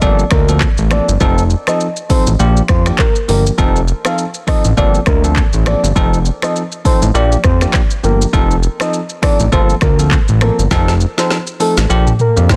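A fat, saturated analog bass sits up front in this breezy, sunny afrobeats excerpt at 101 BPM in F mixolydian, its sawtooth tone plucking and evolving beneath a swung afro-pop kit with a deep kick, woody snare softly clipped, metallic hats, shaker, rim clicks, toms, snaps and handclaps, capped by a drum fill from 10.7 seconds. A bell-like, clean tine electric piano carries the Gm11, F7 and Bb6 changes, while a soft, round octave-layered synth lead sings the melody with chorus, delay and a touch of vibrato. The mix is dense and heavily limited, set in a digital ambience.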